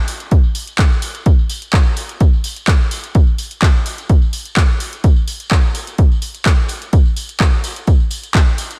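An analog drum machine's handclaps and hi-hats, pumping against the sidechain, open this sunny, feel-good house excerpt at 127 BPM alongside a low-pass-filtered tambourine with a small-room acoustic feel that pumps quietly in the background, before a punchy, tape-warm electronic kick arrives up front at 0.3 seconds, all under a digital ambience.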